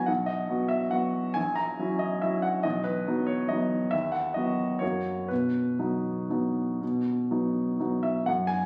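A clear, polished baby grand piano plays solo and up front in this short classical waltz cut from a longer piece, moving in a graceful, playful 3/4 with rubato between 116 and 148 BPM in B major. The harmony circles from B through F#7/A#, B/D# and F# before landing back on B at 5.3 seconds, and the piano spans A#1 to B5. Captured on a phone in the room, the present tone sits in a moderate, large studio reverb with a 1.3-second tail.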